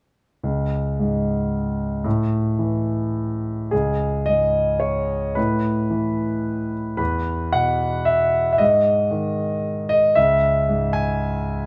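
A clear, deep-bassed concert grand piano sits up front in this wistful, melancholic neoclassical minimalist solo in C# minor, played with rubato in 3/4 at roughly 101-118 BPM, tuned to A4 = 439 Hz and spanning C#2 to G#5, its opening idea giving way at 3.7 s to a second passage that moves through Asus2 before settling on C#m, all bathed in the wet reverb of a stone room in a fragment cut from a longer piece.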